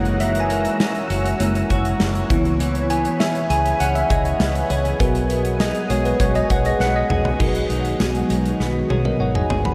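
A nostalgic, moody slice of 1980s-style pop, steeped in a huge ambient reverb that gives the mix a dreamy haze. A bell-like tine electric piano sits up front with analog chorus and carries a solo until 7.4 seconds, over silky string-machine chords, a clean, scooped electric guitar riff drenched in lush chorus and digital delay, and a round, foam-muted fingered bass. A big rock drum kit with bright cymbals, punchy kick and tambourine drives the groove up front, marking the shift into a new section at 7.4 seconds with a fill.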